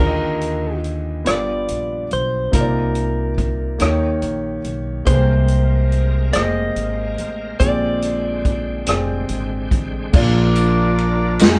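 A clean, picked electric guitar carries the melody through this uplifting, hopeful slow gospel excerpt in 6/8 at 47 BPM, over a clear concert grand piano with audible action noise, woody pizzicato upright bass and a roomy big-band drum kit with dark cymbals and a boomy kick, while a bright tonewheel organ with slow rotary speaker enters in the background at 5.1 seconds and a mellow horn section with octave doubling arrives alongside jingly tambourine at 10.1 seconds, the band heard playing together in one room with moderate reverb.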